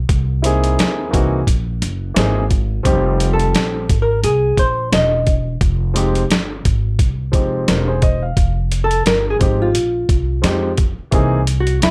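A swung 87 BPM boom bap groove in 4/4 from a gritty, compressed, pitched-down sampler-style kit with a thumpy kick and medium-tuned snare drives this cool, nocturnal jazz-hop piece in F minor, where a woody pizzicato upright bass and a smooth, vintage grand piano with long sustain sit up front over C7alt and Fm9 harmony before a dark, clean hollow-body jazz guitar enters at 3.3 seconds with a fingered melody carried by slapback echo, all set in a lightly reverberant space.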